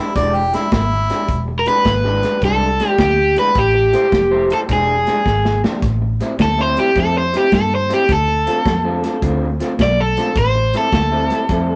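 A swung electric blues shuffle rolls along at 106 BPM in 4/4, brooding and soulful in A minor, in a piece cut from a longer performance. A bright, close-miked harmonica with light vibrato and scooped notes sounds only for the opening 1.5 seconds, overdriven and up front. Underneath, an electric guitar through a small old amp plays the riff with a slightly broken-up, lo-fi tone and spring reverb. A dark, round, foam-muted fingered bass and an airy, polished acoustic drum kit with a medium-tuned snare and tight kick carry the groove. An overdriven semi-hollow guitar takes the melody from 1.6 seconds and, after a drum fill, breaks into a hollow-bodied solo at 5.8 seconds as the harmony moves from E7#9 through Am7 and Dm7. The whole take has the rough feel of a rehearsal room with a moderate small-room ambience.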